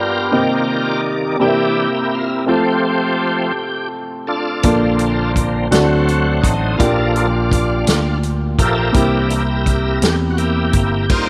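An uplifting, hopeful slow gospel excerpt in 6/8 at 56 BPM, where a bright, shouting tonewheel organ with key click, light overdrive, chorus vibrato and slow rotary speaker takes the lead over woody, slightly detuned upright piano chords moving from Cm7 through C7, F, Bbmaj7 and D7, joined at 4.6 seconds by round fingered electric bass and a punchy, natural country drum kit with crash, hi-hat, kick and snare, all in light reverb.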